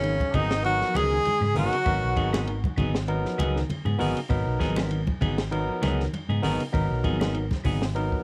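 Lightly reverberant home cassette sound frames this defiant, hypnotic afrobeat fragment on one unchanging chord, where a bright, close-miked tenor saxophone with vibrato leads up front for the first 2.4 seconds over a veiled, bucket-muted trombone section in the background and a nasal, very quiet straight-muted trombone, while a barky tine electric piano through a combo amp, hollow-body arpeggios from a very quiet semi-hollow guitar, a round fingered bass, a small, dark cocktail drum kit with a high-tuned snare and punchy kick, thick-skinned congas, picked stabs from a clean electric guitar and distant woody claves keep the lightly swung groove turning, the stabs and claves entering at 0.3 seconds and dropping out at 7.8.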